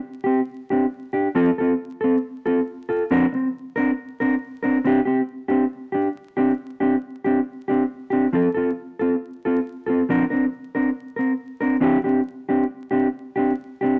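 Highlife in F major at 137 BPM with a light sixteenth-note swing, this danceable, carefree excerpt features a lone mellow electric guitar, dark, clean and fingered, playing up front from 0.2 to 14.0 seconds between E3 and Bb4 over chords moving through Csus2, F and Bbadd9, with a second section arriving at 8.3 seconds, all set in a moderate club reverb with vinyl crackle.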